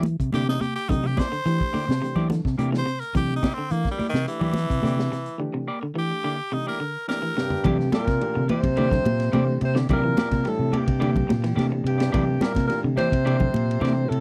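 Afrobeat at 107 BPM in C mixolydian, joyful and hypnotic, where a raspy, up-front tenor saxophone solos over a C9 groove until 7.7 s, with a drum fill from 7.1 s, before a distant alto saxophone with vibrato and a bright bass trombone in the background take over at 7.4 s, over a round, punchy fingered bass, a crunchy, saturated breakbeat kit with a high-tuned snare, soft-handed congas, twangy slightly broken-up guitar arpeggios, clean fingered guitar stabs and a reedy electric piano with harmonic tremolo, in a dry, close 1970s-style studio sound.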